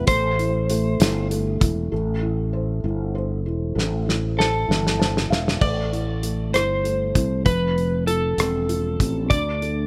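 A studio reverb surrounds this short, dramatic and melancholic pop ballad in A minor, which moves in a slow 6/8 at 65 BPM. An electric slide guitar carries the melody up front with a dark, slightly broken-up tone, dropping out at 1.3 seconds and returning at 4.4 seconds. Beneath it, a felt-muted upright piano supplies soft, mellow accompaniment, its thick felt and audible action noise giving it an intimate character, and it adds a fill of its own just before the final section. A sustaining fretless electric bass sits up front with a growly, amped sound and a lush chorus. A loose indie drum kit, recorded in a small room with dark cymbals, a fat snare and a tight kick, plays a fill starting at 3.8 seconds, while the harmony moves from A minor to F and closes on D5.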